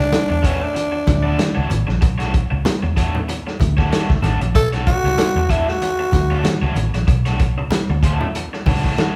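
A funky, driving groove fills this short cut from a longer funk piece, swung lightly on the sixteenths and sitting on a single Bm9 chord throughout. A growling tenor saxophone leads up front, its raspy, breathy subtone tone close-miked with light vibrato in a jazz-style solo that stops at 6.8 seconds. Underneath, a vintage muted electric bass played with the fingers gives a dark, round, foam-muted low end, while a vintage drum kit with a tight kick, medium-tuned snare and hi-hat sounds muffled and lo-fi, its top rolled off as if captured in a small room. Low-tuned congas ring in the background with hard hands, and a raw garage guitar enters at 0.3 seconds, bright and picked through overdrive. The whole band plays live together in one room, bathed in a moderate large studio reverb that gives the performance a roomy character.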